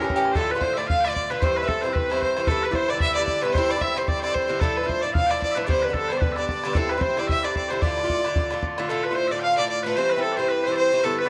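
A swung Celtic reel races along at 225 BPM in 4/4, its D dorian tune spirited and wild, with a boomy, open bodhran driving the pulse from 0.1 to 8.8 s before dropping out. Up front, a focused fiddle carries the melody with light vibrato, while piercing, bright bagpipes hold a continuous second line and a metallic, double-strung Irish bouzouki picks out chords such as Dm, C and Cadd9. The close, detailed sound sits in a moderate recital-hall reverb, and the section repeats at 8.9 s before this cut from a longer piece ends.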